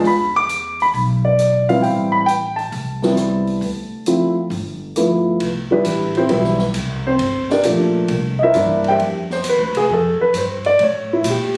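A late-night, cool jazz piano trio swings at 134 BPM in 4/4 from the first second, with a dark, mellow concert grand up front carrying the melody over a woody pizzicato upright bass and an open drum kit of dark-toned hi-hat and ride cymbal, rim click and a high-tuned snare, moving from Am9 through Dm7 and G7 before the piano takes a solo at 5.4 seconds over Cmaj7, Gm7, C7 and Fsus2, all heard in a moderate club reverb and captured on a phone in the room, in a passage cut from a longer piece.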